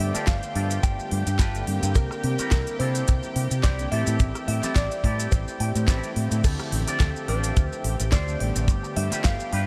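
Nu-disco excerpt at 107 BPM in D minor with a sensual, groovy swing, where a tight, dry kick and a foam-muted fingered bass sit up front under a fat-snared, crisp-hatted electronic pop kit and background maracas with handclaps, while a bright, picked clean electric guitar carries the melody with lush chorus and delay, adding a fill at 5.3 seconds, over a twangy envelope-filtered guitar riff, a dark, round synth brass accompaniment in the background, and a thick, warbling detuned pad pumping with the sidechain through G7, C7, Am7 and Dm7.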